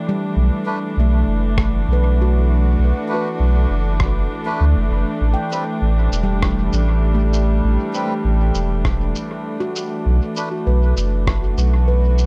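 A deep, round sub bass sits up front from 0.4 seconds, its soft triangle-and-square tone carrying a fast attack and long sustain beneath this hazy, spacious ambient dub excerpt. Around it, a bowed studio string ensemble holds sustained chords with a reedy, gut-string, period-style character, its smooth top roughened by vintage 12-bit sampler grit. A nitrided-steel handpan rings out meditative arpeggios with sharp, bright finger strokes trailing tape echo, while a breathy, nasal melodica adds stabs in the background through dub echo until 10.5 seconds. From 1.6 seconds a tape-toned analog kick thuds in the background alongside a muffled, pitched-down rim click and shaker that are compressed and catch dub echo of their own. The harmony moves from Bm7 to an A chord and back, and the dark production places the mix in a small room ambience.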